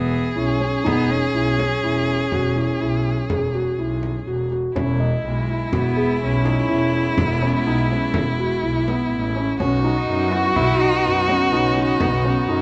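A floating, sul tasto cello carries the melody over a focused, up-front violin second line, mellow felt-muted upright piano arpeggios, a clear bowed double bass and a hard-handed frame drum in the background, with a reedy gut-string chamber section adding sustained chords from 4.8 s in this playful, hopeful excerpt of contemporary chamber music in 5/4.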